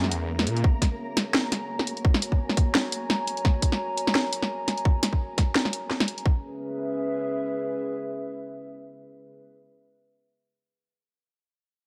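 Half-time drum and bass with a tense, dark mood, cut from a longer piece and built on a deep, moody analog pad that holds sustained chords with subtle chorus and sidechain pumping throughout, while a swirling, thick phased saw bass sounds only briefly at the start. A cracking, layered drum kit of hi-hat and snare sits up front with a hard-clipped, overdriven electronic kick entering at 0.6 s, and a grainy, flickering texture drifts in the background with its own reverb. The drums and texture drop away around 6.3 s, leaving the pad alone on a C#m7 chord in a light reverb.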